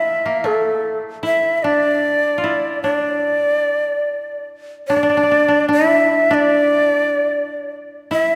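A breathy, bright shakuhachi carries the melody in this short passage of Japanese traditional chamber music, its end-blown bamboo tone close and up front, with a crisp, chiffy attack and vibrato. Beneath it, a mellow koto plucked with fingerpicks plays a second line lower in range, its woody, dry sound also placed near the listener but sitting softer in the balance. Both instruments play together from the start to the end at 8.4 seconds, moving in a free, rubato feel over a loose duple metre. The mood is still and meditative, and a new section begins at 4.9 seconds. A long, wet concert hall reverb surrounds the pair, giving the fragment, cut from a longer piece, a spacious, contemplative air.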